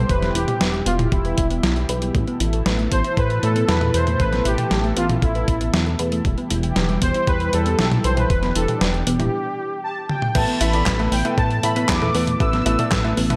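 Light reverb and a digital ambience frame this moody, nostalgic synthwave excerpt, which moves at a straight 117 BPM in 4/4 around Em and Asus2 chords. Up front, a smooth, detuned unison supersaw carries the melody with a soft attack and tape echo. Behind it, a silky, bright analog string pad holds sustained chords through ensemble chorus and sidechain pumping, while a round, tine-like thumb-piano-like pluck plays dark arpeggios coloured by chorus, gritty 12-bit sampler character and tape echo. A glossy, mellow chorused synth bass with ring modulation and a filter pluck anchors the low end, and a clean 12-bit digital drum machine, up front with a medium-tuned snare, handclaps, hi-hat, toms and crash under gated reverb, plays alongside a thumpy, tape-warmed electronic kick, both re-recorded in a large room. After a break at 9.3 seconds and a drum fill at 10.1 seconds, a grand piano with short sustain adds stabs from 10.4 seconds.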